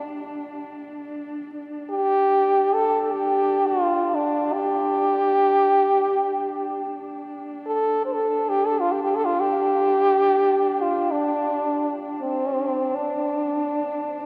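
A cathedral reverb with a 5.0-second decay fills this church or concert-hall recording, giving the sound a vast, solemn space. The piece is Mongolian traditional folk music in free time, set in the D yu mode and cut from a longer work. A French horn with a straight mute carries the melody as a solo placed up front, its tone brilliant yet nasal, with vibrato, a smooth top and a classical style of playing between C4 and C5. Alongside it, a single bowed horsehead fiddle holds a D4 drone on horsehair strings, sounding dark, woody and husky, with vibrato and portamento colouring the held note. Both parts sound together from 0.0 to 14.3 seconds, the fiddle sitting well below the horn in level.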